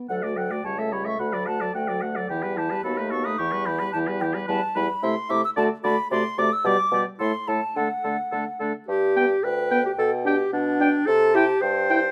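Heard through a light reverb, this lively, spirited excerpt of a quick classical-period movement for wind quintet moves at 110 BPM in 2/4 and shifts from D major to G major at 4.5 s. A pure concert flute with a crisp attack carries the melody over a clear, lightly vibrato oboe on a second line, while the clarinet and a punchy French horn fill in the accompaniment and a mellow bassoon holds down the bass.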